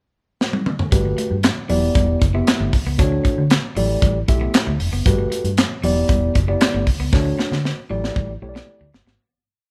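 Early-eighties boogie funk with a smooth, danceable groove, played live in one room with light reverb, opening on a short drum fill before the band enters at 0.9 seconds over jazzy chords like Gmaj9, Em7, Dmaj7 and A7sus4. A punchy, up-front acoustic kit with a high-tuned snare layered with handclaps drives a mid-tempo boogie beat, while a dark, foam-muted fingered bass plays a fat syncopated line with chromatic approach notes and a mellow tine electric piano adds clean syncopated chords in drop-2 voicings with grace notes. Tucked in the background, a slightly broken-up, compressed electric guitar picks a muted single-note riff, and the piece closes with another drum fill as it fades out from 7.1 seconds.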